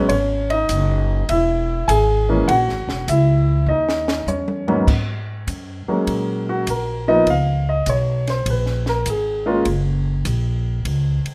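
A light reverb sits over this smoky, swinging jazz piano trio excerpt at 100 BPM in 4/4, tuned to A4 = 444 Hz and settling into G# dorian. A natural, up-front grand piano carries the melody over a woody, thumpy upright bass with gut strings and a compact cocktail kit with dark cymbals, a high-tuned snare and a punchy kick. After a drum fill at 3.7 seconds, the piano takes a solo from 4.9 seconds before dropping out at 9.6 seconds, leaving bass and drums to close the passage.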